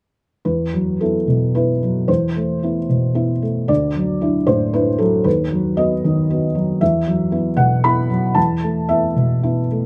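Set in a loose, rubato three-beat metre, this short passage of neoclassical minimalist piano drifts forward with an intimate, wistful mood. The only instrument is a felt-muted upright piano playing solo from 0.4 to 9.9 seconds, spanning D2 to B5. Its tone is soft and dark, the thick felt dulling each note, and the audible action noise of the mechanism keeps the instrument close and up front. The harmony moves through open colours: Esus2, Amadd9/E, Dadd9 and B/D#, before returning to Esus2 and settling on Asus2/E. Recorded outdoors, the sound is dry and immediate, touched only by light reverb, and the fragment is cut from a longer piece.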